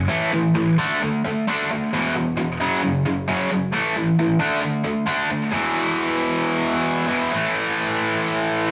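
A rough rehearsal-room recording in a stone room with moderate reverb captures this sunny, confident rock fragment in A major at 133 BPM, where a lone bright, tightly distorted, picked electric guitar, double-tracked and up front, drives through A5, D5, E5 and F#5 chords before shifting at 5.5 seconds to a closing E5 to A5 move.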